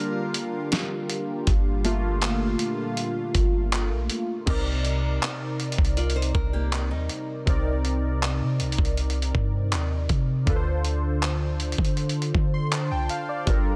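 Detuned, chorus- and phaser-laden analog keys lead this moody, longing contemporary R&B cut in G minor at 80 BPM, taking a solo from 1.5 seconds over Gm7 and moving on to Cm9 and Dm7. A brief raspy alto sax note with delay and a lush sawtooth unison pad open the piece, while a gritty sampler-style kit with thumpy kick, snare, hi-hat, handclaps and crash cymbal drives things alongside a round, dark 808-style bass that arrives at 1.5 seconds. A small fingerpicked nylon-string guitar with finger squeak adds delayed arpeggios from 6.0 seconds, all within a dry, dense, heavily limited modern mix.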